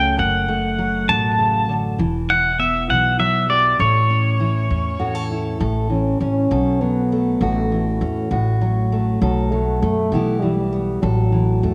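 A gentle 6/8 lilt at 66 dotted-quarter beats per minute carries this hopeful, nostalgic folk fragment, with a pizzicato upright bass on thumpy gut strings and an up-front, full-bodied dreadnought acoustic guitar fingerpicked beneath, finger squeaks and all. A clean, compressed pedal steel sings the opening melody with slide and volume swells through tape echo until 5.3 s, after which a dark, smooth-topped French horn takes a classical-style solo from 5.6 s, also through tape echo. The whole piece sits in a moderate echo chamber blended with a small room, as the chords drift from D/F# and Em toward a closing A5.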